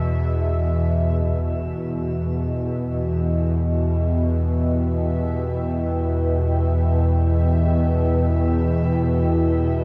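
A worn, warbling cassette sound with drifting pitch hangs over this cavernous, desolate dark ambient drone in E minor, moving in free time and cut from a longer piece, its huge reverb set inside a small room. An up-front, tense, string-like bowed drone holds the low register throughout, while a bright, bubbling texture of resonant random filter steps fades in from 1.2 seconds, just as a barely audible huge impact lands. At 3.4 seconds a deep, moody pad enters with sustained chords, its chorus and shimmer reverb adding to the gloom.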